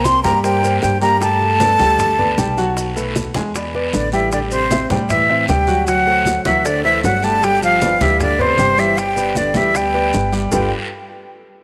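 This excerpt of lively, danceable Afro-Cuban jazz moves at 155 BPM in a straight 4/4 in G major, its groove carried by low-tuned congas with a bright, thin skin and very quiet, round bongos, both entering at 0.1 seconds, alongside a raspy guiro and grainy, mellow maracas. An upright bass plays pizzicato, its steel strings giving a woody, thumpy low end. Up front, a breathy metal jazz flute carries the melody with a soft attack, straight tone and lifted highs, while a dark trombone with light vibrato and a smooth top sings a second line beneath it. A vintage concert grand piano supplies accompaniment with deep bass and short sustain, moving through Gadd9, Am7, D7 and G7 before settling on G9 at 10.5 seconds. A moderate plate reverb with a long tail lends the ensemble a roomy glow.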